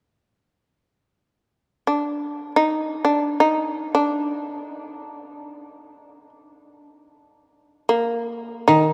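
In free time, this calm, austere fragment of Japanese traditional chamber music opens with the shamisen at 1.9 s, carrying a narrow, up-front melody in a buzzing, percussive, plectrum-plucked fretless tone. The koto arrives only briefly at 8.7 s with a mellow, woody, dry accompanying note played with fingerpicks. A long cathedral-like reverb surrounds the performance, and the recording is cut from a longer piece.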